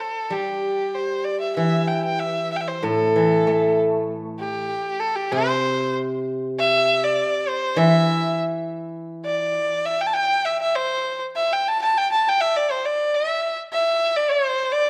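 A single bowed erhu opens this pastoral, graceful Chinese chamber piece, carrying the melody up front with a rich, earthy tone, a biting edge, light vibrato and sliding portamento. A steel-string zither, played with fingerpicks, joins almost at once with a silvery, ringing accompaniment in its low register. The piece moves into a new section at 6.6 s, and the zither falls away at 9.6 s, leaving the erhu alone in the rubato 2/4 flow, all set in a moderate scoring-stage reverb and cut from a longer work.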